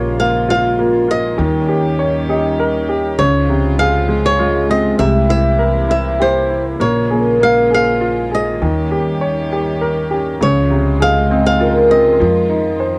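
A home cassette recording in a moderate studio room gives this 13-second excerpt of an acoustic folk-pop ballad its intimate and melancholic feel, with tape coloring every part except the bass. Moving at 100 BPM in a straight 3/4 and tuned to A4 = 445 Hz, it cycles through Bbm7, Eb7, Dbmaj7 and C7 before the second pass closes on Fm7. Up front, a fingerpicked flamenco guitar carries the melody with a bright tone and audible finger squeak, beside a brilliant, present upright piano whose woody accompaniment reveals its action noise. A concert harp adds ringing, thumb-plucked arpeggios, while a soft-attack chamber string section holds pure, floating chords from a distance. Underneath, a pizzicato upright bass with steel strings anchors the harmony with a dark, woody tone.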